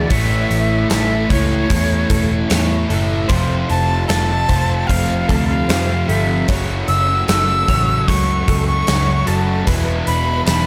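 A breathy, bright flute carries the melody with vibrato and a slapback echo over a warm twelve-string electric guitar's chorused arpeggios, while crunchy double-tracked, dark overdriven and thick fuzz guitars grind out background riffs, the overdriven one trailing a reverse reverb. A round, punchy, foam-muted electric bass anchors the low end from the start, and an up-front gated 80s drum kit, airy and big-roomed with a medium-tuned snare and tight kick, joins at 0.1 seconds to drive this dreamy, wistful shoegaze and dream pop passage at 75 BPM in 4/4. The harmony moves from A through F and F#m7 to E7sus4 in a small room ambience, cut from a longer piece.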